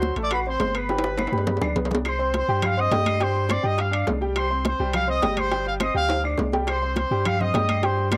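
Salsa with a passionate, fiery mood, led by a bright, tight trumpet section up front with light vibrato and plate reverb, over a woody upright piano, a deep, punchy sub bass with tube saturation, ringing metal-shell timbales, round low-tuned bongos and soft-handed congas, while distant claves enter at 0.3 seconds and drum fills arrive at 0.9 and 6.1 seconds in this homespun cassette recording.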